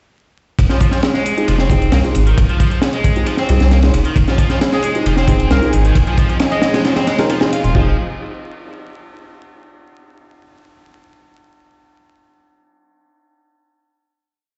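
A dark, gritty sound in a bare stone room, with vinyl crackle and a rolled-off top, carries this energetic, complete breakbeat track in F minor at 134 BPM, built on a single Fm7 groove from 0.6 seconds that settles on a final chord at 7.8 seconds. An up-front, crunchy looped breakbeat with a punchy kick, high-tuned snare and dusky ride sits under a quiet metallic electronic hi-hat, while a thick, tube-saturated sub bass plays a dub-style line and a biting, double-tracked overdriven guitar repeats a 16-step sequence through lo-fi sampler grit, filtering and tape echo. A mellow baby grand adds syncopated parallel chord stabs with audible action noise, lush bowed strings pump in the background from 4.2 seconds, and a raspy, distant alto saxophone with a thin radio tone offers short phrases.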